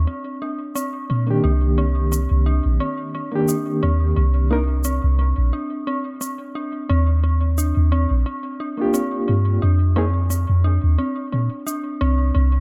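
Brooding and cinematic, this trip hop fragment, cut from a longer piece, moves at 88 BPM in 4/4 with a light swing on the sixteenths. An eerie, warbling FM synth bell, detuned and dark with chorus and tape echo, spins mellow arpeggios over a deep, round 808-style bass that sits up front, while a close, dry egg shaker enters at 0.8 seconds. A reedy, worn electric piano, slightly out of tune and heard through its built-in speakers with tremolo and tape echo, adds accompaniment in two brief passages, starting at 1.3 and 8.8 seconds, as the harmony drifts from a rootless Fsus4 to Ebmaj7 and F5 in a largely dry room.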